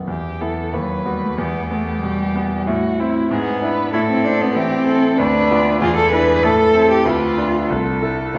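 A bright, brilliant concert grand piano sits up front in this restless, dramatic classical-period piano trio movement at a quick 94 BPM in 2/4 with a rubato feel, its deep-bass accompaniment carrying a single con sordino violin that sings a dark, veiled, soft-edged melody with vibrato and portamento from 0.1 s, while a close, muted cello joins with a second line from 0.7 s as the music moves from E minor to A minor at 5.2 s, all heard from further back in a reverberant recital hall in this brief cut from a longer piece.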